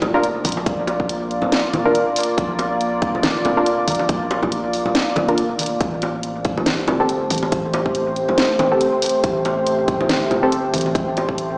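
A half-time deep dubstep groove at 140 BPM in 4/4, with a 57% swing on the sixteenths, carries this cavernous, brooding piece in A phrygian, cut from a longer track. A tight, up-front electronic kick enters at 0.4 s, joining a garage drum kit whose cracking, tape-tinged snare and hi-hat sit just as forward, while hard-handed congas and bongos add an acoustic, small-room texture trailed by dub echo. Beneath them a thick, saturated sine sub bass holds its low register with a fast attack and long sustain. Up front, a moody sawtooth pad of detuned unison voices and a sub octave swells in slowly and sustains its chords with chorus and its own reverb, moving from Bb to Am7 at 5.8 s. Further back, a muted, mellow filtered chord stab plucks short, detuned sawtooth hits with chorus and dub echo, and the whole mix sits in an echo-chamber reverb that suggests a big sound system in a bare room heard through a small speaker.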